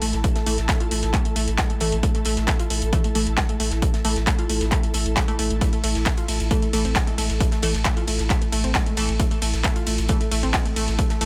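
This driving peak-time techno excerpt at 134 BPM in a straight 4/4 opens on an A5 chord, with a thick, saturated sub bass on A1, a warbling, lo-fi pluck riff, an ethereal pad and two drum kits all sounding from the start, tuned slightly flat of standard pitch. A punchy electronic kick arrives at 0.2 seconds and sits up front, while a layered techno kit adds handclaps, metallic hats and ride cymbal, and a very quiet acoustic kit contributes hi-hat and a medium-tuned snare from a small room. The detuned, dusty pluck riff moves between G#3 and F4 through chorus and delay, its mellow square-and-sawtooth tone evolving under a filter sweep and a noise layer. From 0.5 seconds a crisp, digital wavetable chord stab with a moving notch and tape echo sits in the background, as does an airy pad spanning E4 to A5 with ensemble chorus, tremolo and built-in reverb. The bass, pluck, pad and stab all pump against the sidechain, giving the dry, intense mix a relentless forward push.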